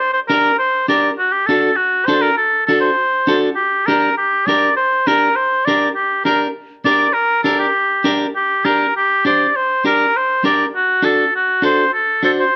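A vintage-toned classical oboe opens this passionate, fiery Latin fragment at 201 BPM in G harmonic minor, carrying the solo melody up front as a dark, clean, picked electric guitar joins at 0.3 s to accompany over Gm and D7 chords, with the music moving into a new section at 8.4 s, all captured by close, detailed microphones in light reverb.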